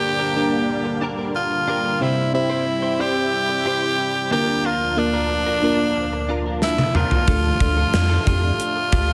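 1980s-style pop in a moody, nostalgic vein, this clip puts a raspy, gritty tenor saxophone melody with light vibrato up front over a mellow, round FM electric piano and a lush, thick detuned unison pad, both washed in chorus and phaser, while a clean, direct-recorded electric guitar riff sits in the background with ensemble chorus and digital delay; a punchy gated 80s drum kit bursts in with a fill at 6.6 seconds, and a deep, dark analog bass joins at 7.3 seconds, all set in a lush hall reverb.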